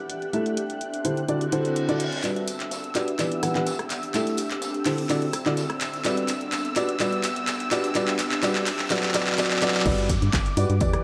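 A silky analog string pad and an ethereal, bright airy pad open this euphoric, uplifting piano house excerpt in G major at 126 BPM, both pumping with sidechain and shimmering with ensemble chorus, the airy pad also carrying phaser and its own reverb, while a dark, woody upright piano riff sits up front with low-pass filtering and dub echo over a layered, tape-warm house kit of claps, hi-hat, rim clicks and crash. A very quiet reverse cymbal and riser creep in at 1.5 seconds, and from 2.2 seconds a build-up unfolds over chords moving through Gmaj7, Em7, Am7 and Dadd9, with a filter sweep on the piano, a drum fill, and a distant, roomy big-band kit adding hi-hat, snare and tambourine. The drop arrives at 9.9 seconds on Gmaj7 with a punchy analog kick and a hollow, organ-like FM bass, all set in a lush hall reverb.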